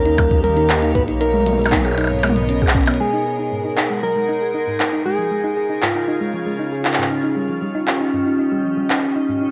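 Opening together, a clean, fingered electric guitar carries a dark melody through cassette tape and tape echo while a crystalline glass pad holds chorused, pumping chords and a rumbling, detuned saw bass sits beneath. This glitchy, intricate IDM excerpt moves at 117 BPM in G# dorian, with a round, tine-like thumb-piano pluck spinning arpeggios and an up-front, overdriven glitchy kit of clicky hats, cabasa, handclaps, blips and toms joining a soft electronic kick. The bass and kick drop out around 3.0 s after a drum fill, as a filter sweep moves over the pad and the whole piece sits in a moderate spring reverb with a homespun cassette character.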